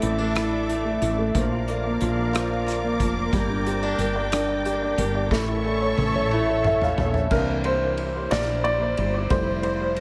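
A dark, mellow concert grand piano with dub echo anchors this melancholic, dramatic six-eight pop ballad at 60 BPM, alongside lush bowed strings, a growly fretless bass with analog chorus, a studio-room drum kit played with bundle sticks, and a picked acoustic guitar with dub echo in the background until 7.9 s. A drum fill enters at 5.3 s and a piano fill at 6.3 s, followed by a piano solo from 7.3 s, through chords moving from Asus4 to Fmaj7, all in an echo-heavy mix with spring reverb.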